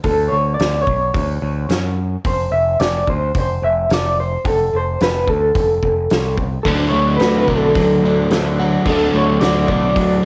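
A straight 4/4 groove from a loose, roomy indie drum kit with a fat snare, tight kick and rolled-off top drives this wistful, jangly indie rock excerpt, cut from a longer piece, under a growling, overdriven picked bass. Up front, a bright, twangy electric guitar through a small old amp carries the melody with tremolo and a slightly broken-up edge. At 6.6 seconds an overdriven semi-hollow guitar with analog chorus enters on a riff, joined a moment later by a compressed overdriven electric guitar, while a very quiet, flute-like tonewheel organ with slow rotary adds sustained chords, all with the light reverb and cassette character of a home recording.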